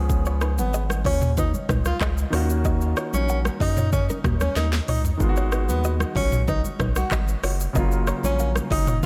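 A warm grand piano and a round, dark analog bass open this hypnotic, smooth afrobeats excerpt, joined almost at once by an electronic afro-pop drum kit with a deep kick and sharp snare, then a bright, clean electric guitar riff with delay in the background, a breathy tenor saxophone melody with vibrato, scooped notes and delay, and vintage thick-skinned congas, set in light reverb over C#7, D#m7, G#m7 and F#maj7 chords, with a drum fill at 4.6 seconds.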